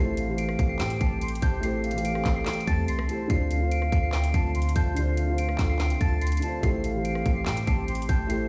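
A pure, mellow FM synth bell melody with chorus and delay opens this dark, brooding half-time trap piece at 144 BPM in D minor, together with a boxy, intimate grand piano with audible action noise, a detuned, slow-attack sawtooth analog pad with chorus, and a deep, boomy sine 808-style bass; at 0.2 seconds a breathy jazz flute with vibrato and delay joins, along with an up-front trap kit of hard-clipped kick, woody snare, metallic hats, handclaps and rim clicks, all sounding as if played through a big sound system in a bare stone room over Am7 and Dm7 chords.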